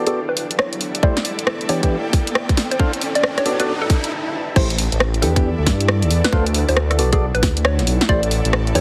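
A skippy, late-night slice of two-step UK garage, swung on the sixteenths and cut from a longer piece, opens with a build-up in which an electronic riser runs until 4.1 seconds beneath hollow, nasal organ stabs and an ethereal, airy pad treated with ensemble chorus, tremolo and sidechain pumping. A bouncy square-wave pluck carries the melody through a filter sweep, its tone roughened by vintage 12-bit sampler grit and trailed by dub echo. The overdriven garage kit, with crash, hi-hat, rim click and a cracking snare, sits up front alongside a tight, layered electronic kick that enters at 1.0 seconds. After a brief break, the drop lands at 4.6 seconds, when a dark, detuned sawtooth bass arrives with a deep, rumbling, beating tone, tube saturation and sidechain pumping. Minor seventh chords cycle underneath, and the whole mix has a heavily compressed, radio-like sound with light digital ambience.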